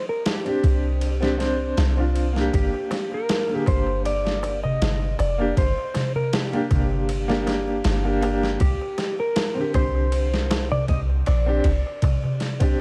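Brooding and melancholic, this trip hop fragment sets a dark, clean lap steel guitar melody with dub echo and slide over a gritty boom bap sampler-style kit with thumpy kick, snare and ride, a woody upright piano with audible action noise, tremolo and tape echo, a deep, round 808-style bass, and a clay-shelled darbuka entering at 2.5 seconds.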